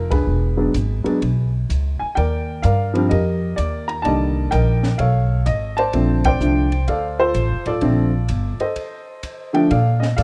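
A warm, natural-toned upright piano carries the melody up front in this playful, relaxed jazz piano trio excerpt, swinging in Bb major at 127 BPM over a woody pizzicato upright bass with steel strings and a dry cocktail drum kit with dark cymbals, a high-tuned snare and a punchy kick, in light reverb, with a band accent at 6.2 seconds and a break from 8.8 to 9.7 seconds.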